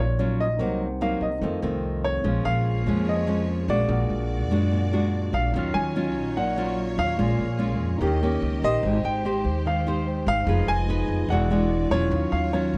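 A straight 4/4 bossa nova groove carries this intimate, melancholic excerpt from a longer piece, with a fingerpicked nylon-string guitar showing finger squeak and a woody pizzicato upright bass sitting up front beneath a natural-sounding baby grand piano melody with short sustain. A bright, barky tine electric piano adds clean accompaniment through a combo amp in the background, and from 2.2 s a lush bowed string section joins with soft-attack, vibrato-rich sustained chords over changes such as Ebm9, Abmaj7 and E9. The sound is a dry, close 1970s-style studio recording touched with light reverb.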